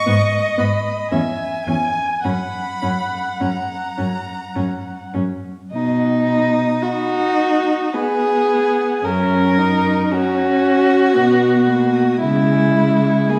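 Heard from further back in a wet recital hall, this excerpt from a slow, romantic string quartet movement in B major moves at about 51-59 BPM in a rubato 3/4, its mood serene and tender. A distant first violin sings the melody with vibrato and portamento, sitting softer than the up-front second violin, whose woody, dark line has a smooth top. Beneath them, a focused viola fills in the accompaniment and a close, even cello holds the bass, as the harmony drifts from G#m toward F# before the second section opens on B at 5.7 s.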